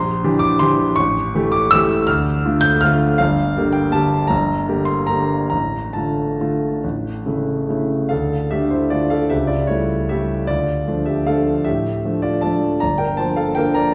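A wet recital-hall reverb with a 1.6-second decay surrounds this excerpt, heard from further back in the room, yet the solo grand piano still sounds intimate and natural, with audible action noise and long sustain. It is an elegant, nostalgic classical waltz in 3/4, played with a flexible rubato across a span from G1 to G6, its opening harmony moving from Em7b5/Bb through A7 to Dm and Gm. At 8.1 seconds a new section begins on Dm, passing through A7/C# before settling onto Gm7 as the fragment breaks off at 13.9 seconds.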